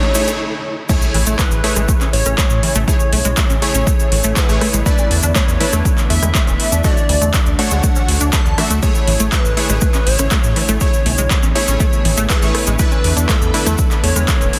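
A catchy, detuned square-wave lead with vibrato and dub echo carries this hopeful, uplifting progressive house cut, backed by punchy supersaw stabs, a tight arpeggiating synth with chorus, phaser and cassette tape colour, and a smooth, warbling vintage pad, all breathing with sidechain pumping. A background riser and brief stop give way at 0.9 seconds to the drop, where an overdriven electronic kick enters and an impact rings until 2.9 seconds. A round, dark analog bass, a grainy acoustic tube shaker and a deep house kit with metallic hats, handclaps, rim clicks and crash drive a dense, heavily limited mix.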